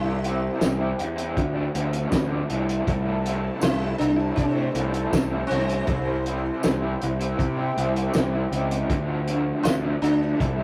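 A buzzing, shimmering sitar melody opens this dark, mysterious psychedelic rock excerpt in D minor at 80 BPM alongside a double-tracked, overdriven garage guitar riff with tremolo and a punchy fuzz bass, while a thuddy, muffled drum kit with a fat snare enters at 0.2 seconds, an evolving, detuned wavetable pad with phaser drifts in the background from 0.4 seconds, and a jingly tambourine sits quietly from 0.6 seconds, all in a rough rehearsal-room sound with light reverb.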